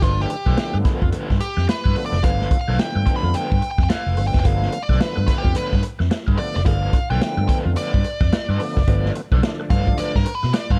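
A gritty, playful funk groove opens at once with an up-front vintage drum kit, its punchy kick, medium-tuned snare and hi-hat sounding natural in a studio room with a rolled-off top, beside a round, foam-muted fingered electric bass that sits dark and amped at the bottom. Over this loose, swung sixteenth-note feel, a nasal lead guitar with a parked wah takes a solo for the full 10.8 seconds, its picked, overdriven tone shadowy and pointed. A raw garage guitar, picked with overdrive, wah and tremolo, fills in accompaniment beneath it at a lower level. An overdriven tonewheel organ adds thick, full stabs colored by chorus vibrato and a slow rotary speaker, dropping out at 10.2 seconds. The whole passage rests on a single G9 chord, cut from a longer piece, and the small room ambience gives the production a dark, warm character.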